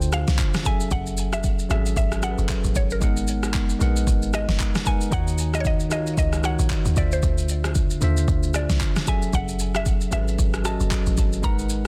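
Riding a swung sixteenth-note groove in 4/4, this deep, soulful amapiano excerpt sets an up-front, tape-warm deep house kit of handclaps, rim clicks, shaker, a deep kick and a fat snare with soft clipping under a round, decaying log drum bass, clean tine electric piano chords moving through Dm9, Gbm9, Abm9 and Ebm9, and a woody, mallet-like synth pluck melody carrying chorus and delay, all in a dense, heavily limited modern mix.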